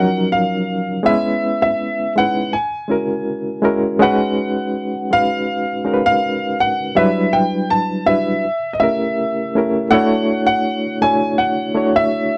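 Romantic and warm, this short soul passage moves at an unhurried 81 BPM in 4/4 with a gentle sixteenth-note swing, tuned slightly sharp to A4 = 444 Hz. A concert grand piano carries the melody high in its register, between D#5 and A5, its tone intimate and natural with deep bass and the mechanical noise of its action audible up close. Beneath it, a reedy electric piano plays the accompaniment from E#3 to C#5, bright and barky, lightly overdriven and pulsing with a fast tremolo through its built-in speakers. Both instruments sit up front and play together for the full 12.4 seconds. The harmony drifts through lush extended chords, opening on D#m9 and passing through F#9 and B6 before turning to Em7 and A7b9 and settling on Dmaj7 at 9.9 seconds. The sound is dry and close, with little reverb, in the manner of a 1970s studio recording, and it is cut from a longer piece.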